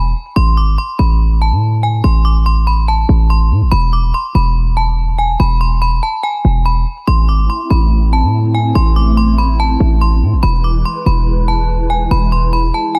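Set in a digital ambience with audible lossy compression artefacts, this short cut from a longer trap track moves at 143 BPM in a half-time 4/4 feel, its eerie, menacing mood rooted in A harmonic minor. A punchy, heavy 808-style bass sits up front from the start, its sine body topped with a noise layer and a fast attack that decays into deep low notes. Above it, a metallic FM bell carries the melody high in its register, its inharmonic, ringing tone full-bodied and treated with chorus and tape echo. At 7.1 seconds a hollow, flute-like pad enters with soft, detuned sustained chords, its mellow tone shaded by ensemble chorus and a phaser. The harmony alternates between A minor and E across the passage, keeping the tension unresolved.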